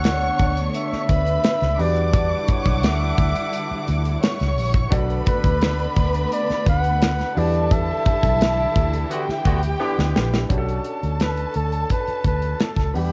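A breathy flugelhorn with scooped notes and light vibrato carries the melody of this silky, cinematic 1970s-style soul piece at 86 BPM, shadowed by a lush symphonic violin section and a clear, intimate grand piano with audible action noise, while a distant string section holds sustained chords until 10.5 seconds, a round, foam-muted electric bass and a tight, polished drum kit sit up front, and a roomy horn section adds stabs from 9.1 seconds ahead of a drum fill and the flugelhorn's solo, captured in a small room with light reverb on a home cassette recording with a capped top end.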